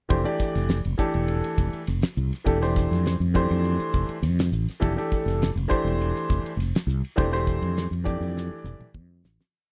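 Funky and bright, this short electric jazz fusion piece rides a single Fmaj9 groove in a dry, close 1970s-style studio sound with lossy artefacts, as a round, punchy fretless electric bass drives a syncopated riff, a damped 70s drum kit with a fat snare, tight kick and dark cymbals lays down a fusion ride groove, and a clear grand piano with long sustain pushes quartal chord voicings, before a fade-out from 7.2 seconds and a closing drum fill at 8.4 seconds.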